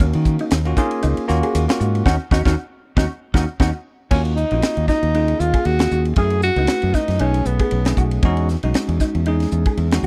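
This electric jazz fusion excerpt opens with the full rhythm section at once: a tight funk drum kit with a high-tuned snare and tight kick, a bright fingered electric bass sitting up front, a bell-like tine electric piano, and a dark, clean electric guitar adding chorused stabs. The mood is intense and slick, with a lightly swung sixteenth-note feel over an Ebm7 chord. The band hits a run of accents from 2.1 seconds, capped by a drum fill at 3.9 seconds. At 4.1 seconds a breathy tenor saxophone takes the melody, its scooped notes and light vibrato riding on a smooth top, before it drops out at 8.0 seconds. Beneath it the harmony moves through lush extended chords, from Ebm9 through Gbm9 and B13 to Emaj13, all captured in a dry, close small-room sound with a 1970s studio character.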